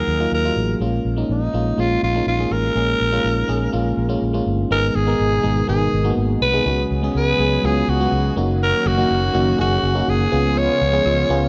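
Nostalgic yet urgent, this pop excerpt at 123 BPM sets a breathy, raspy alto saxophone melody up front over glassy, bell-like FM electric piano and a growly, punchy fretless bass with lush chorus, while a brassy, detuned analog pad joins in the background at 4.7 s as the chords move from Ebmadd9 and Bbm7 through Abm to Db7, and a very quiet, woody marimba with hard mallets slips in at 11.1 s.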